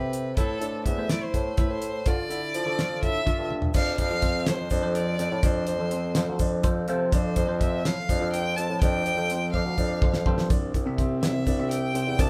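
Intricate and bright, this progressive instrumental band piece in 7/8 has a clear, smooth bowed violin carrying the melody over a bell-like, phased tine electric piano and bright concert grand arpeggios sitting in the background, while a mellow, roomy bassoon with light vibrato holds down the bass. A dry, up-front 70s drum kit with a fat snare and tight kick drives the ensemble, with fills at 3.5 seconds and again from 9.5 seconds, and a grainy egg shaker joins distantly from 3.7 seconds as the music moves into a new section. The band sounds like it is playing live together in a large studio room, and the passage is cut from a longer piece.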